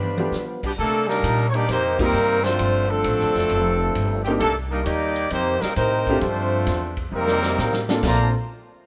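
Energetic and brassy, this big band swing excerpt moves at 132 BPM in 4/4 with a firm swing feel. A close-miked saxophone section with light vibrato carries the melody only for the opening 0.6 seconds before an up-front trumpet section with a smooth top takes over, while a tight trombone section plays a second line and a short-sustain baby grand piano comps through chords like Cm9, F9sus4 and G9sus4. A woody pizzicato upright bass and an acoustic drum kit with dark cymbals and a punchy kick drive the groove, with a band accent at 1.9 seconds and a drum fill leading to a closing Bbmaj9 in light reverb.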